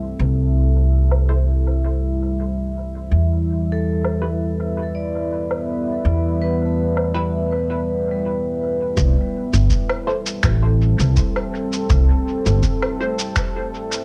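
A deep, warbling dark pad and a woody, thumpy pizzicato upright bass open this hazy ambient dub excerpt at 82 BPM, soon joined by muffled, pitched-down electronic woodblock, cabasa and finger snaps and a muted, detuned filtered dub chord stab soaked in phaser and dub echo, with a ringing vibraphone on medium hard mallets spinning arpeggios from 3.7 s and a tape-warm analog electronic kick arriving at 9.0 s as the harmony moves between C6 and Em, on a home cassette recording marked by a faint mains hum.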